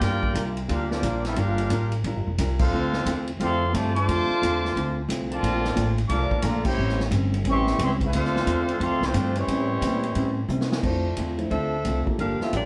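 A clear, vintage trumpet section with light vibrato and plate reverb carries the melody over a tight trombone section's second line in this sultry, brassy big band swing cut from a longer piece in D minor at 177 BPM, backed by a dark, clean hollow-body electric guitar, a woody, growly pizzicato upright bass up front and a distant, roomy drum kit, until a drum fill at 10.5 s leads to a smooth, up-front saxophone section with plate reverb taking the melody at 10.8 s alongside an intimate upright piano with audible action noise in the background.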